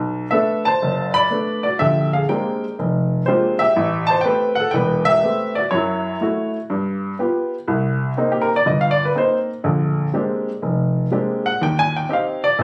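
Solo jazz with a smoky, late-night mood: a baby grand piano swings alone through a 12.6-second excerpt of a longer piece, its intimate, natural tone sitting up front with short sustain and audible action noise. The harmony drifts through rich seventh and extended chords before settling into a new passage at 7.7 s, spanning from deep bass notes to the upper middle of the keyboard. A moderate club ambience and the close, unpolished character of a phone capture give the sense of sitting near the bandstand.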